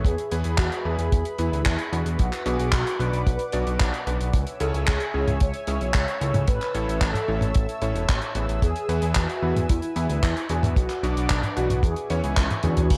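An excerpt of italo disco at 112 BPM in a straight 4/4 opens at once with a dry, tight kick, a fat analog bass and a smooth pad, with a damped 70s drum kit joining at 0.1 seconds. The mood is danceable and romantic, moving through E, Bm, C#m and A before settling on an E6 chord near the end. A round, brassy synth lead carries the melody between C#4 and C#5, its detuned sawtooth tone dressed in chorus, vibrato and a digital delay. Beneath it, a mellow pad with a slow attack and long release holds chords, while a bright, clangy electric grand piano cuts through with vintage stabs. The nasal, saturated bass sits up front with a filter pluck, and the drum kit adds hi-hat, handclaps, toms and dark cymbals, ending in a fill from 12.5 to 12.9 seconds. The production is dark and warm, with light reverb and a small room ambience.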